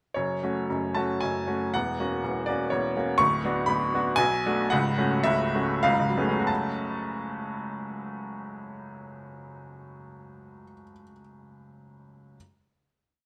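Stormy and brooding, this short romantic character piece for solo piano unfolds in F# minor, in 3/4 at a flexible, rubato pace between 90 and 125 BPM. A bright upright piano carries everything, pairing a single-line melody with octave bass and chords across a span from C#1 to C#6. Its tone is brilliant and woody, placed up front and intimate, with long sustain and the action noise of the instrument plainly audible. The harmony moves from F#m through F#7/E, Bm/D and Bm7 to F#m/C# and C#7, while the music slows from 2.5 to 6.5 seconds before settling on a closing F#m chord that rings until about 10.2 seconds. A light reverb surrounds the polished, present sound of this complete piece.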